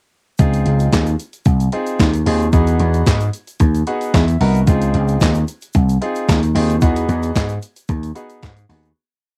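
Danceable and smooth, this short, complete piece of early-eighties boogie funk moves at 112 BPM in a straight 4/4, in Db major and tuned slightly low to A4 = 438 Hz. A clean 12-bit digital drum machine drives a four-on-the-floor boogie beat with a thumpy kick, a medium-tuned snare layered with handclap, and hi-hat, sounding sampler-style and tape-softened, re-recorded in a small room and set up front. Beside it, a vintage slap bass plays a fat, syncopated line with chromatic approach notes, its amped tone punchy and forward. A bright grand piano with audible action noise and long sustain pushes rootless chords through Dbmaj9 and Emaj9, adding a short fill between 3.9 and 4.7 seconds, while a grainy egg shaker ticks sixteenths close and dry in the background. The home cassette recording carries little reverb, and the whole verse fades out from 6.8 seconds to its end at 9.0.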